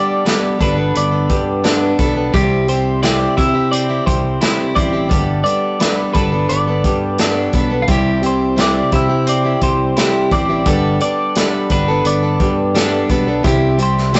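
A rough rehearsal-room recording, with warm saturation, muted highs and a moderate stone-room reverb, frames this nostalgic, jangly slice of folk rock and heartland rock at 86 BPM in C major, cycling between Gadd9 and C. Two clean, compressed twelve-string electric guitars carry a melody and a lower riff over a boxy, up-front picked acoustic guitar. A natural country drum kit with a punchy kick and medium-tuned snare enters at 0.3 s, and a bright, growly fingered electric bass joins at 0.6 s.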